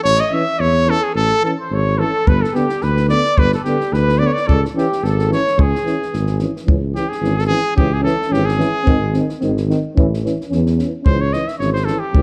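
Swung sixteenths drive this virtuosic, bittersweet Balkan brass band piece at 109 BPM in 2/4, where a clear, up-front trumpet carries the melody and takes a solo from 6.7 seconds, a soft-attack flugelhorn with vibrato traces a very quiet second line until 6.4 seconds, a dark tuba anchors the bass, a breathy, distant trombone and a mellow euphonium add accompaniment, and a compact cocktail drum kit with a punchy kick and high-tuned snare joins at 2.3 seconds, set in light reverb with a warm, shadowy production.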